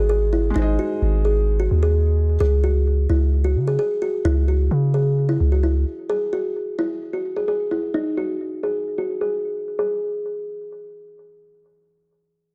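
Dark, eerie hip hop in a trap style, this cut from a longer piece moves at 130 BPM with a half-time feel in C# harmonic minor. A woody, hollow-toned kalimba carries the melody with soft fingertip plucks and a trail of delay, sitting up front and playing until 11.1 seconds. Underneath, a felt-muted upright piano adds intimate accompaniment, its audible action noise giving it a natural, close character before it drops away at 2.4 seconds. A deep, sine-like 808-style bass with a fast attack and long decaying tail anchors the low end up front, holding until 5.8 seconds. The harmony shifts from G# to C# minor before falling away to unaccompanied melody. A light studio reverb and a low-pass filter shade the whole mix, keeping the sound mellow and shadowy.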